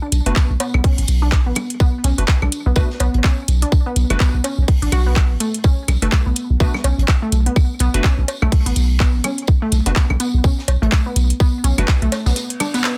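A dry, dense and heavily limited mix carries this sparse, cool stretch of swung minimal techno, cut from a longer piece, with a tight, layered electronic kick and a deep, punchy sine sub bass with a pitch-drop attack sitting up front, the bass pumping against the sidechain. An overdriven analog drum machine adds booming handclaps and metallic hats, while a dark, smooth acoustic cocktail kit supplies filtered hi-hat, high-tuned snare and tambourine, and overdriven cowbell, bongos and claves ring through tape echo. A juicy, squelchy blip pluck with a resonant filter sweep, chorus and echo plays the riff over a B7(no3) chord, crisp detuned wavetable stabs shimmer through phaser, and a very quiet reverse cymbal enters at 12.5 seconds during the closing break.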